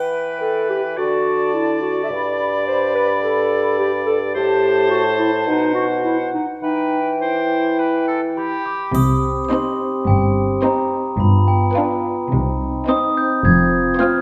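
A straight, even 4/4 pulse carries this playful, whimsical film cue, cut from a longer piece, with a magical, quirky air. It opens with a woodwind group: a clear, roomy oboe, a dark clarinet and a pure flute section each play a second line, while a mellow bassoon sits up front as accompaniment over a minor progression. Around 8.4 seconds a glockenspiel played with rubber mallets takes the melody, its soft, bell-like ring sounding airy and up front. At 8.9 seconds the harmony turns darker as a close-miked French horn section holds sustained chords, rich cello and double bass sections supply a smooth bowed bass, and a dry triangle adds a brief bright touch. Violin sections enter at 9.5 seconds, one carrying a soft-attacked melody and another a line with portamento, beside a distant viola section, all three sitting in the background with expressive vibrato. The whole is bathed in a lush scoring-stage reverb with a dark production tone and a faint mains hum beneath.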